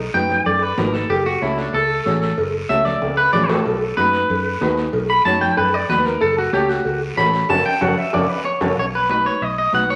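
A festive, joyful cumbia fragment cut from a longer piece, with vinyl crackle over a wet large-studio reverb, moves at a brisk 188 BPM in straight 4/4 as the chords shift between B and F#m. Up front, a twangy, picked clean electric guitar carries the melody with spring reverb, soloing through the first 8.8 seconds, while a woody upright piano with audible action noise supplies accompaniment and a round, foam-muted fingered electric bass holds the low end. High-tuned congas sit distant in the background, with ringing cowbell and timbales and a raspy, close guiro; drum fills land at 3.0 and 7.5 seconds, the latter joined by a band accent before a short new section begins at 8.8 seconds.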